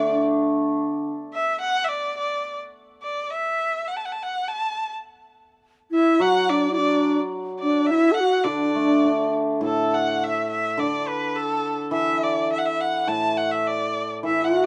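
Chinese traditional chamber music in a festive, graceful mood, moving at 104 BPM in 2/4 with a rubato feel and set in D gong mode, cut from a longer piece. A clear, nasal erhu carries the melody throughout with vibrato and portamento, while an airy bamboo xiao adds an unsteady, tongued second line, mainly between 5.9 and 9.3 seconds, and a bright, shimmering hammered dulcimer rings out in accompaniment briefly at the opening and again from 6.2 seconds onward. The close, detailed recording sits in light reverb, with the erhu and dulcimer up front as the music passes from its opening phrase into a second section at 9.6 seconds.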